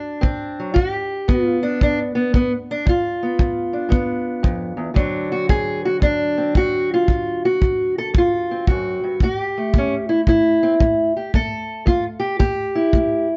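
A boxy, parlour-toned steel-string acoustic guitar carries the melody up front, fingerpicked through a soulful, swaggering country blues that swings over D7, G7 and A7 changes. A dark, punchy kick drum played with brushes sits beside it, smooth and rolled-off at the top, while moderate studio reverb lends the whole duo a mellow, shadowy glow. The passage is lifted from a longer piece and runs about 13.4 seconds.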